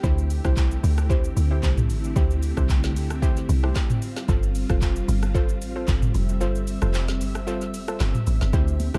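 A deep, round log drum bass with a percussive FM bite sits up front in this late-night amapiano excerpt at 113 BPM with a light 16th-note swing, joined by a produced electronic afro-pop kit of woody snare, metallic hats, handclaps, rim clicks, shaker and toms whose deep kick drops out from 6.4 to 8.5 seconds, while a vintage organ-like ensemble string pad holds mellow chorused D9sus4 and G9sus4 chords beneath soft, dark plucked stabs, tape echo colours the pluck and the drums in a dry, echo-heavy mix, and thick-skinned congas slip in faintly at 8.8 seconds.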